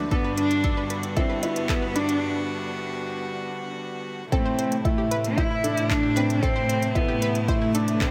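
A distant, expressive solo cello carries the melody in this cinematic, moving piano-and-strings electronica, bowed with vibrato and portamento between A3 and E4 and touched by digital delay. The fragment is cut from a longer piece and runs at 114 BPM in a straight 4/4, in A dorian, moving from Gmaj7 to Am. An intimate, woody upright piano with audible action noise plays a riff through delay. Beneath it, a chamber cello section holds an earthy bass line, while a string quartet in the background floats sustained chords with soft attack and airy bow, both parts pumping with sidechain. A bright, detuned analog pluck adds quiet arpeggios colored by chorus, cassette tape and delay. A deep, up-front electronic kick drives the track alongside a produced kit of handclaps and smooth hi-hats, both tape-touched and re-recorded in a large room; the clip opens as a build-up with a break from 2.2 seconds, and the drop lands at 4.3 seconds, set in light reverb and small room ambience.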